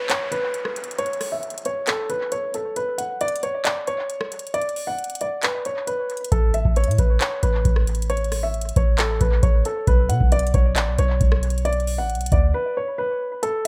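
Trap hip hop at 135 BPM in a half-time feel, this dreamy, triumphant excerpt sets a dark, intimate baby grand piano melody, low-pass filtered and tape-echoed with audible action noise, over a booming analog drum machine of deep kick, metallic hi-hats, handclaps and rim clicks re-recorded in a large room, while an electronic downlifter runs until 2.8 seconds and a mellow sine 808-style bass with a noise layer plays from 6.3 to 12.5 seconds beneath the move from Aadd9 to Bm, the mix bathed in echo-heavy digital ambience.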